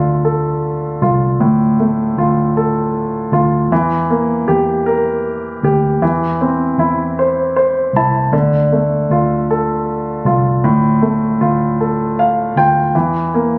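Captured on a phone in a small room and touched with light reverb and compression, this brief cut from a longer six-eight pop ballad sounds intimate and aching. A clear, polished baby grand piano sits up front carrying the melancholic accompaniment, with fills at 7.2 and 11.8 seconds. Beneath it, a dark, foam-muted fingered electric bass supplies a round, punchy low end throughout.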